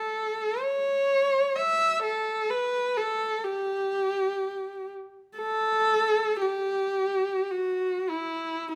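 Mournful and meditative, this brief classical fragment from a longer piece features a single unaccompanied viola in a freely expressive 3/4 with supple rubato, its bowed line sitting close and up front between E4 and E5, colored by a soft attack, vibrato and gliding portamento, and set in the moderate reverb of a large studio.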